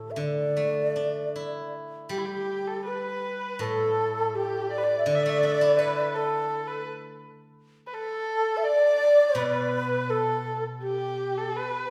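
An airy, mellow bamboo xiao carries the melody with vibrato and a soft attack over a bright, silvery steel-string zither whose fingerpicked notes ring out up front, setting a festive yet graceful mood in this rubato Chinese chamber piece. At 2.1 seconds a single bowed erhu joins as a close, warm second line, smooth and even with vibrato and gliding portamento. The ensemble sits in the lush reverb of a recital hall, and the zither falls away at 11.5 seconds as the xiao and erhu carry on to the cut at 11.9 seconds.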